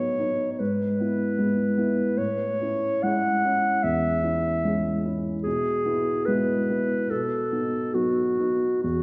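A mellow clarinet sings a serene, lyrical melody between F#4 and F#5 over warm grand piano accompaniment, a romantic classical duo in E major flowing with rubato at 67-77 BPM in 4/4, both voices up front in a wet recital hall reverb as the harmony moves from B7/A through E/G# and Amaj7 to E/B and B7 across this 9-second fragment of a longer piece.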